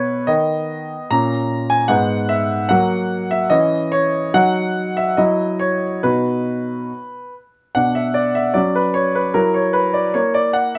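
Elegant and graceful, this brief cut from a classical-period piano sonatina moves in a gently rubato 2/4, with a clear concert grand piano playing solo throughout, its sound open and up front with deep bass reaching down from G#2 and a range extending up to A#5. The opening phrase settles back onto its home chord at 6.0 s before the music turns to the minor at 7.7 s. It then presses toward a dominant seventh as the passage breaks off at 10.8 s, all set in a light reverb.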